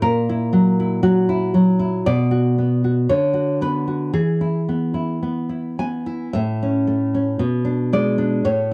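A fingerpicked nylon-string guitar opens at once and carries this short fragment of a romantic classical piece alone, from 0.0 to 8.7 seconds. The mood is tender, the tempo slow and elastic at roughly 53-60 BPM in 2/4, with a rubato feel that lets the phrases breathe. The guitar's tone is dark and woody, with the dulled character of old strings and a deep classical voice that ranges from A2 up to G#5. Its harmony moves from F#7/A# through Bm and Bm/D to E, then A and E7/B, ending on that unresolved chord as the fragment is cut off. The instrument sits up front in a dry, close 1970s-style studio sound, giving the performance an intimate, unadorned presence.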